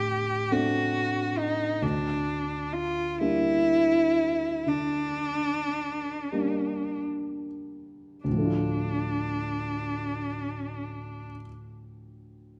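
Close, detailed microphones catch every nuance of this short cut from a longer romantic classical duo, set in a wet scoring-stage reverb that lingers for about a second and a half. In D minor and a rubato 12/8 at roughly 29-47 BPM counted in dotted quarters, the mood is melancholic and yearning, and the tempo slows through the opening phrase. A single bowed cello carries the melody up front between D4 and G4, its rich, expressive tone shaped by vibrato, soft attacks and portamento. The grand piano accompanies from D2 to F4, also up front, with an intimate, natural sound and audible action noise. The harmony moves from D7 to Gm over D, then settles on D minor as a new section begins at 8.3 seconds. The cello falls silent at 11.3 seconds, leaving the piano to finish alone at 12.6 seconds.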